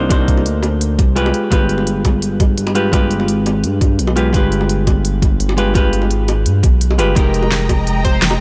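A dark, clean hollow-body jazz guitar sits up front in this melancholic, rolling liquid drum and bass excerpt, its picked chords softened by a low-pass filter and trailed by delay. Beneath it, a smooth, mellow synth bass with a touch of vibrato holds the low end, while a knocking electronic kick and a layered pop kit with a fat snare and crisp hats drive the straight 4/4 groove. Round, low-tuned bongos played with hard hands sit in the background, adding an acoustic, small-room texture to the produced drums. The harmony moves from Cm9 to G7b9, then settles on Fm11 at 7.2 seconds, where a lush symphonic string section enters with expressive portamento and sidechain pumping. At 8.0 seconds, just before the cut, a punchy, detuned unison lead flicks in with a brief plucked note, all set within a digital ambience.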